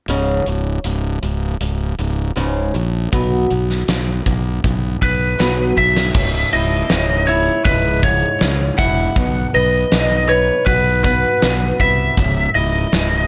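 Angsty and cathartic, this 80 BPM quiet-loud alternative rock excerpt in C# minor sets a woody, boxy picked archtop guitar's arpeggios with slapback echo over a growly fuzz bass and a huge arena drum kit with a fat snare and punchy kick, while a twangy, slightly broken-up lead guitar with slapback echo takes the melody from 5.0 seconds, shortly before a drum fill at 5.8 seconds drives into the C#m and B chords, all in light reverb.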